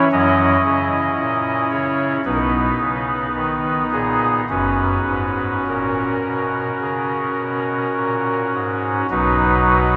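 A pipe organ's soft reed oboe stop, up front with a tremulant and baroque voicing, plays alone in this serene, reverent classical chorale-style fragment cut from a longer piece, moving in a rubato 4/4 at 50-57 BPM through F#7, B, F# and back to B at 9.1 seconds across a range from F#1 to D#5, all bathed in a cathedral reverb that lingers for about 5.0 seconds.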